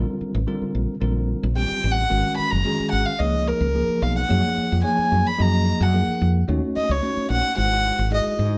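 A nasal, reedy violin with a gut-string tone enters at 1.6 s and carries the melody up front in this funky, slick electric jazz fusion fragment at 110 BPM, riding over a round, punchy fretless bass and bright, bell-like tine electric piano chords that move from A#maj9 through C#9 and F#maj7 to G#7b13, the three players sharing one room with moderate studio reverb.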